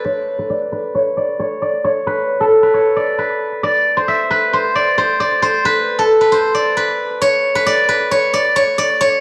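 Brooding and dark, this half-time hip hop fragment at 134 BPM in B minor is carried entirely by a solo steel-string zither, played with fingerpicks in a register from A4 to E5, its silvery, ringing tone sitting up front through a low-pass filter and analog delay. A filter sweep runs across the zither from 0.1 to 7.2 seconds before the music moves into a new section for its final two seconds. Light reverb and a small-room ambience frame this cassette home recording, which is cut from a longer piece and tuned to A4 = 439 Hz.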